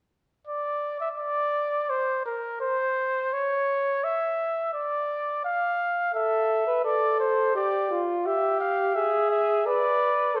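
In a straight 4/4 at 85 BPM, this solemn, contemplative fragment of a classical imitative canzona for brass opens with a soft-attacked trumpet alone at 0.5 s, singing the melody with light vibrato, until a warm, distant-sounding flugelhorn with its own gentle vibrato joins on a second line at 6.1 s as the harmony moves through Am, G5 and E/G#, both horns up front in a reverberant recital hall.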